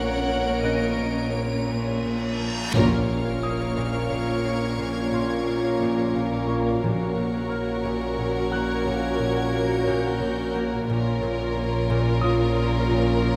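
Close, intimate strings sit in a moderate scoring-stage reverb, giving this eerie, ominous suspense cue a hushed, confined feel in an unhurried triple metre. Sul tasto, softly bowed violin sections carry a very quiet melody over a second violin line. A third violin layer adds high texture until 10.5 seconds, while a background viola section fills in the accompaniment. Dark cellos and chamber double basses hold the bass. A string-like, nasal, detuned drone adds tension beneath them, and a pulsing, tempo-synced gated texture with chorus and its own reverb shimmers in the background. Mellow French horns and distant, roomy trombones sustain the chords while a ringing, fingerpicked concert harp repeats a riff and a smooth vintage grand piano adds faint texture. An electronic reverse cymbal and sub drop rise from 1.7 seconds into a hit at 2.7 seconds, where hard-mallet timpani enter and the harmony settles onto the minor chord, the cue then moving between two chords as it continues.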